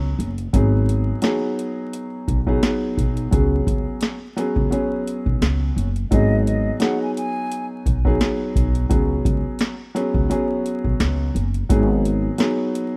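Dark and moody, this swung boom-bap hip-hop cut opens with a worn, slightly detuned upright piano with cassette-tape character and audible action noise, over a thumpy, woody pizzicato upright bass and a booming analog drum machine with a deep kick, crisp snare and metallic hats. The harmony alternates between G#m7 and C#7sus4, and from 6.1 to 7.7 seconds an airy silver concert flute with vibrato and delay adds a short, expressive melodic phrase. A small room reverb, vinyl crackle and a rough home-demo mix give this brief section of a longer piece an intimate, lo-fi feel.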